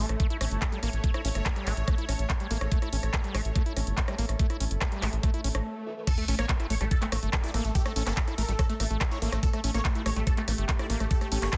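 A straight 4/4 pulse of up-front, knocking electronic kick and a layered electronic drum kit with bright hi-hats, handclaps, rim clicks and crash drives this hypnotic psychedelic trance excerpt, where a deep, round analog bass sits up front beneath a squelchy, saturated acid bass riff with dub echo and a very quiet wobbling formant-sweep bass, while an evolving, phased wavetable pad and an airy, breathy pad (until 5.7 s) pump in the background, and a swell and sub drop lead through a short break into the drop at 6.1 s, where a punchy, detuned supersaw stab takes the melody with phaser and tape echo.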